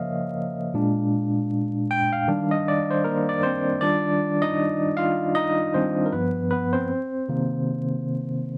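A barky tine electric piano plays alone from the start of this soulful R&B fragment. It sits up front with a bright, lightly overdriven bite through a combo amp, colored by a medium tremolo. The pulse is slow, at 78 BPM in 4/4, with a light swing on the sixteenths in E-flat major, and the piano ranges from G2 to G5. Its chords move through Db6, Bb7 and Eb6, and a second passage arriving at 3.8 seconds brings G7 and Cm7. A moderate studio reverb gives the instrument some air, while vinyl crackle underneath lends a worn, warm feel to this short cut from a longer piece.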